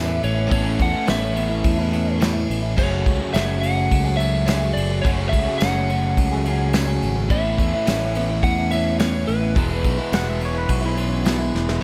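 A slightly broken-up lead guitar carries the melody with tape echo through this nostalgic, open-road folk and heartland rock excerpt, its bright, compressed tone riding over a picked acoustic archtop, a double-tracked crunchy overdriven riff in the background, and a direct, up-front fingered bass moving from Aadd9 to F#madd9 and back before landing on E. A small-room brush kit with a tight kick and medium-tuned snare sits up front, joined by a jingly tambourine tucked behind. At 10.1 seconds a twangy, clean pedal steel enters with fingerpicked slide lines, volume swells and tape echo, and a drum fill arrives at 11.5 seconds, all under light reverb.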